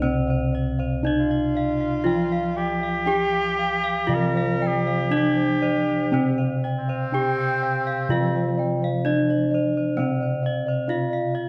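Javanese gamelan at 59-68 BPM in a shimmering, ceremonial mood, this brief excerpt layers a ringing horn-mallet bronze metallophone melody over a mellow, padded metallophone accompaniment with paired-tuning beats, bright close arpeggios from another metallophone and round bossed gongs, and a dark, smooth bossed-gong bass, while a breathy, whispered tenor saxophone with vibrato and scooped notes sits up front as a second line from 1.2 to 9.2 seconds, all in a moderate recital hall reverb.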